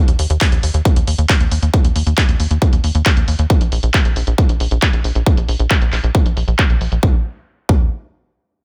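Uplifting trance at 136 BPM in a straight 4/4, soaring and driving, this excerpt cut from a longer piece sets a tight sawtooth-and-square sequencer bass with a fast-attack filter pluck, moving notch and sidechain pumping up front from 0.1 s, alongside an overdriven analog drum machine of handclaps and low-pass-filtered, pumping hi-hats re-recorded in a large room, while a layered, tape-toned electronic kick punches through from 0.4 s in a dry, close mix.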